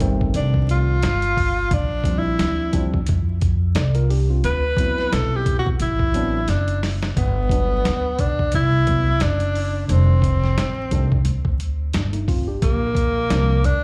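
Cool, warm jazz-hop cut from a longer piece, where a breathy, whispered tenor saxophone with scooped notes, vibrato and slapback echo enters at 0.4 seconds and takes an intimate solo through the first section until 7.2 seconds. It plays over a worn, slightly out-of-tune tine electric piano, a woody pizzicato upright bass and a gritty, pitched-down boom bap sampler-style drum kit whose fill at 6.5 seconds leads into the second section, the whole band heard as a live gig through a club PA with reverb, vinyl crackle and faint mains hum.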